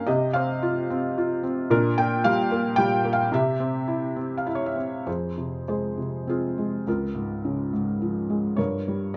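A felt-muted upright piano plays alone in this bittersweet, cool classical fragment, cut from a longer solo piece in F minor and 3/4 at a rubato 97-113 BPM, its soft, mellow, intimate tone spanning Db2 to G5 and sitting up front under close, detailed microphones and light reverb, moving from Csus4 and Gm/Bb to C before a second passage at 5.1 s turns through Fm and Db6 to a closing Gdim.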